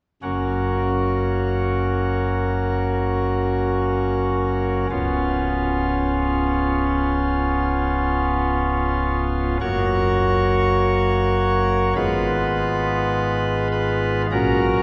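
A nasal, chiffy cornet stop on solo pipe organ, voiced in baroque style and set up front, carries this reverent, serene chorale-style fragment in F# major at a rubato 51 BPM in 4/4, moving from F# through C#7 and Fdim/Ab to F#/A# across about 15 seconds, bathed in the long, wet reverb of a church.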